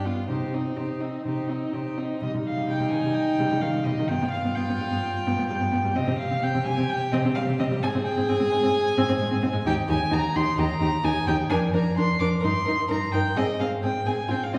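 A dark, nasal first violin carries the melody up front in this restless, stormy excerpt from a quick classical-period string quartet movement at 129 BPM, alongside a warm second violin on the second line, a viola with light vibrato in accompaniment and a rich, close cello on the bass, each played by one bowed player on gut strings in period style, as the music moves from C minor to Eb major at 9.7 s within a wet concert-hall reverb heard from further back in the room.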